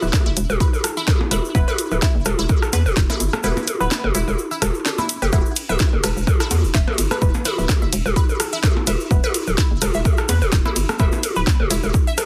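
An up-front, punchy electronic kick with overdrive drives this sparse, hypnotic minimal techno excerpt, dropping out from 3.4 to 5.3 seconds while a hollow, bouncy FM bass pumps against it, a squelchy, resonant blip pluck with phaser and delay riffs above, muted dub chord stabs with chorus punctuate the groove, an overdriven house kit adds a cracking snare and bright hats, a click kit supplies rim clicks, toms and blips, and a grainy cabasa rattles behind, all under a dense, heavily limited master.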